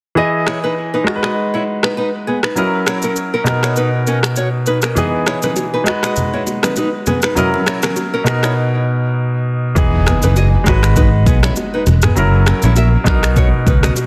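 A dense, heavily limited mix in a small room carries this hypnotic, sultry afrobeats excerpt, where a clear, polished baby grand piano and a fingerpicked nylon-string guitar with digital delay and finger squeak ride over a produced electronic drum kit with a deep kick, snaps, rim clicks, shaker and toms, distant congas and bongos join at 5.0 seconds, and after a silent gap a dark, round fingered electric bass and a background impact arrive at 9.8 seconds beneath the Emaj7, G#m7, F#7 and Bmaj7 cycle.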